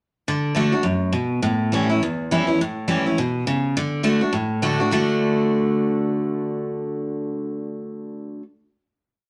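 Rollicking and rowdy, this short rock piece sets a lone picked steel-string acoustic guitar up front in light reverb at a brisk 206 BPM with a swung 4/4 feel in D major, its bright, full-bodied dreadnought tone alternating bass and strum with bass runs and a touch of finger squeak over D and A7 before ringing out on a final D chord from 4.9 seconds.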